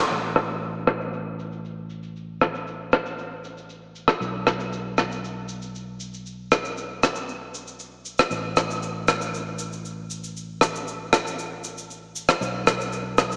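Up-front cabasa and rim click, dry and acoustic with a rolled-off top, carry a filter sweep through this feel-good, groovy nu-disco excerpt at 117 BPM in straight 4/4, over a round, amped fingered electric bass ranging from A1 to B1, with the mix steeped in a lush 2.4-second hall reverb that lends a dreamy, small-speaker sound.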